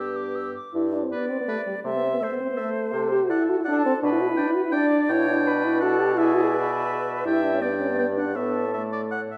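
A quick classical-period movement for wind quintet in a lilting triple metre, this graceful, cheerful passage is cut from a longer piece and moves with a rubato feel. The silver concert flute carries the melody with a pure, metallic tone, gentle vibrato and soft attacks, while the oboe sings a second line with a warm tone and light vibrato in a classical manner. Up front, the mellow French horn supplies accompaniment with a distant, roomy colour, joined by the clarinet, whose smooth top sits in the background. The bassoon anchors the bass with a warm glow and light vibrato. All five parts play together from the opening to about 9.3 seconds, with harmony that begins on G and closes on Asus4 in the wet, reverberant acoustic of a recital hall.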